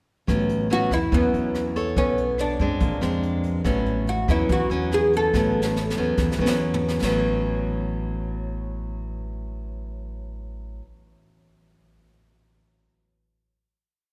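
Romantic and breezy, this short bossa nova piece in A major moves at 142 BPM in a straight 4/4, tuned slightly low to A4 = 436 Hz. The nylon-string guitar sits up front with a fresh-stringed, classical tone, fingerpicked with audible finger squeak as it pairs thumb bass with syncopated plucked chords through A69, Bm9 and Bb9. The pizzicato upright bass, thumpy and close, plays a dotted root-and-fifth line on steel strings, while a jazz brush kit in a small room sets a soft bossa groove with a high-tuned snare, boomy kick, rim clicks, hi-hat, toms and crash. From 0.7 seconds a bright, plectrum-plucked oud carries the melody, its fretless, woody double strings shaping motif-based sentence phrases. A drum fill arrives at 5.3 seconds, and from 7.0 seconds the guitar and bass hold a final chord under light reverb.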